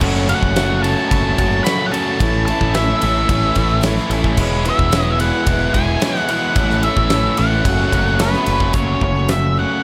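This classic rock clip, cut from a longer piece, has a gritty, brooding mood at a straight 110 BPM in 4/4, in F# minor, moving through F#m, A, E6 and A before returning to F#m. A warm, overdriven electric guitar and a tight distorted guitar, set in the background, both play the riff, while a growly picked electric bass holds the low end and a big acoustic rock kit drives with a fat snare, punchy kick, hi-hat, ride, and crash cymbals that ring bright. From 0.3 seconds, a dark octave-fuzz lead guitar carries the melody above the heavy guitars. Very quiet, a shimmering, octave-doubled twelve-string acoustic guitar and a clear, woody upright piano add accompaniment, with the piano dropping out at 8.6 seconds as a short new section begins at 8.8 seconds. Light reverb gives the studio sound a touch of space.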